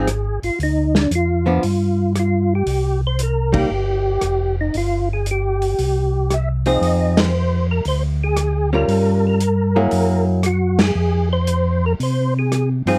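A percussive tonewheel organ carries the melody from the first moment, its clean, round tone marked by third harmonic percussion and colored by chorus vibrato and a slow rotary speaker. Beside it, a hollow-body archtop guitar, miked and amplified, plays picked, compressed accompaniment in a dusky, clean electric voice, while a second, mellow tonewheel organ holds down the bass line with the same chorus vibrato and slow rotary swirl. A dry, lo-fi soul drum kit joins almost at once, using hi-hat, kick, ride, rim click and snare, with muffled, shadowy cymbals, a tight kick and a rolled-off top that keep it tucked behind the up-front organs and guitar. This soulful, bluesy soul jazz organ trio swings its eighth notes in four, moving through minor-flavored changes with suspended, altered and half-diminished colors before returning home. The whole band hits accents together at 3.4, 7.1 and 10.7 seconds, and the close, detailed miking with little reverb makes this short cut from a longer piece sound intimate and immediate.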